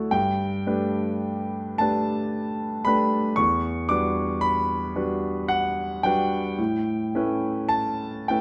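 Hazy and nocturnal, this brief impressionist solo piano fragment in a rubato 3/4 lets a clear, up-front concert grand with deep bass and long sustain drift through Gadd9, Em9 and A9 harmonies across its 8.4 seconds, ringing naturally in a moderate recital hall reverb.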